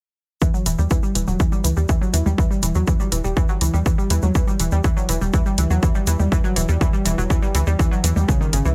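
At 0.4 s, a melancholic, hypnotic melodic techno groove in E minor at 122 BPM starts at once on an Emadd9 chord. A heavy, overdriven electronic kick sits up front beside a tight, punchy sawtooth sequencer bass, and a round, detuned analog pluck plays arpeggios through chorus and analog delay, with both synth parts pumping from sidechain compression. A grainy acoustic egg shaker in a small room joins from the start, tape-warm electronic hi-hats and congas enter at 0.7 s, and the whole dry, gritty recording carries a digital ambience.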